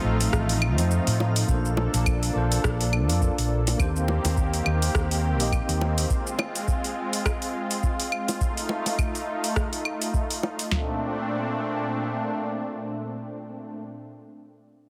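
A dense, heavily limited mix with light reverb carries this relaxed, sunny sunset chillout clip at 104 BPM in Bb major, with a 16th-note swing. A lush, nasal, detuned sawtooth pad with chorus sustains chords up front to 13.8 s, joined by a clean tine electric piano through tape echo, an amped, up-front fretless electric bass, and a very quiet, twinkling granular texture with an octave-up shimmer that ends at 1.5 s. Round, low-tuned bongos and an overdriven deep house kit of claves, shaker, rim click and metallic hi-hats enter at 0.2 s, followed at 0.3 s by an analog rhythm box with a deep kick, crisp snare and toms, and the kick drops out briefly before the chords move through Bbmaj9, Eb6 and Ab6.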